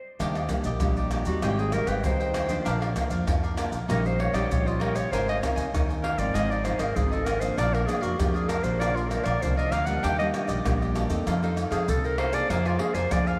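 A straight samba-choro groove in 4/4 comes from maracas, surdo, pandeiro and tamborim, with a tight surdo and hard-handed strikes sitting up front, while a woody pizzicato upright bass, a crisp picked cavaquinho and a full-bodied fingerpicked nylon-string guitar with audible finger squeak fill out the harmony from the opening moments. At 1.3 s a breathy clarinet takes a jazz-style solo, its smooth top, vibrato and scooped notes trailed by tape echo. The lively, bittersweet passage, cut from a longer piece, is soaked in a lush hall reverb that gives it a dreamy glow.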